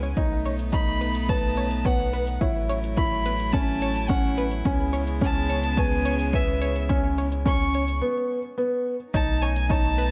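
Hypnotic and moving, this piano and strings electronica fragment sets a distant, vibrato-laden solo violin melody over soft sul tasto string quartet chords and a round sine sub bass, both pumping with the sidechain, while a felt-muted upright piano with audible action noise plays an intimate riff with delay, a bright sawtooth pluck arpeggiates in the background through chorus, delay and a filter sweep, and a punchy overdriven kick and hi-hat drive a build-up in a small room that breaks at 8.0 seconds.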